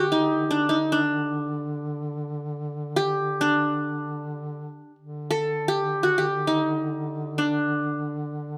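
Up front, a bright, plectrum-plucked acoustic qanun with triple strings and plate reverb carries a passionate, festive makam ensemble melody, restating its phrase from 5.0 seconds, over a dark, smooth-topped folk duduk drone with vibrato and scooped notes, all in a snug small room in this fragment cut from a longer piece.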